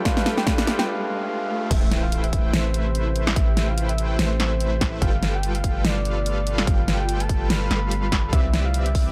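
Cut from a longer future bass track in A minor at 145 BPM, this bittersweet, emotional passage opens on a short build-up. A barky, clean tine electric piano heard through a combo amp plays accompaniment alongside a soft, round octave-layered synth lead carrying the melody with chorus, vibrato, 12-bit sampler grit and dub echo. A smooth, detuned supersaw riff, a very quiet breathy pad holding sustained chords, a background riser and a drum fill also sound in this opening stretch. At 1.7 seconds the electric piano stops and the drop arrives with an electronic impact and a deep, sine-toned 808-style bass that sits up front with a fast attack and long decay, its sidechain pumping shared with the lead and supersaw. A punchy, layered electronic kick and a big-room kit with a huge snare, hi-hat and crash drive a swung, half-time groove over chords moving from G9 to Am9, back to G9 and on to Cmaj9. 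The production is dark and dry, with little reverb.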